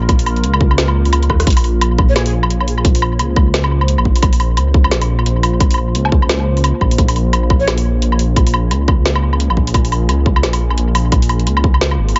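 A half-time drum and bass groove at 174 BPM swings its sixteenths in Bb minor, driven by a hard-clipped electronic kick up front and a layered kit of woody snare, metallic hats, rim click and woodblock with tape echo, with a drum fill at 1.3 seconds. Beneath it a rumbling, detuned saw bass holds the low end while a moody ambient pad sustains a Bbm chord with chorus, reverb and sidechain pumping, giving this cinematic, dark fragment of a longer piece its shadowy weight. A breathy jazz flute with vibrato surfaces briefly in the background at 2.1 and 7.6 seconds through analog delay, set in an echo-heavy, lightly reverberant mix whose top end stays dulled.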